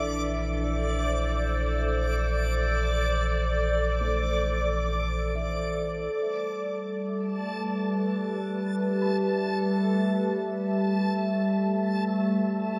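A warbling, nostalgic pad sits up front in this weightless ambient passage, cut from a longer piece, holding detuned, lo-fi chords softened by chorus and a shimmering reverb. Beneath it, a round sine sub bass anchors the opening Bbmaj7 until 6.1 seconds, when the harmony moves to G6 and the bass drops away. An evolving analog drone hums quietly in the background with chorus, while a reversed, granular texture swells in a bright, dreamy haze. From 4.0 seconds a felt-muted upright piano adds very quiet, intimate arpeggios, its thick felt and audible action noise lending a close, hushed character. The whole is bathed in a lush hall reverb within a dark, warm production.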